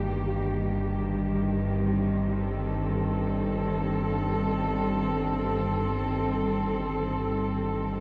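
A veiled, muted cello section holds sustained bowed chords over an Eb/G harmony with light vibrato, while a warbling analog drone with chorus rumbles low beneath and a very quiet flickering, grainy texture hovers above, all steeped in a cathedral reverb that gives this dark, ominous ambient fragment its dreamy, free-floating gloom.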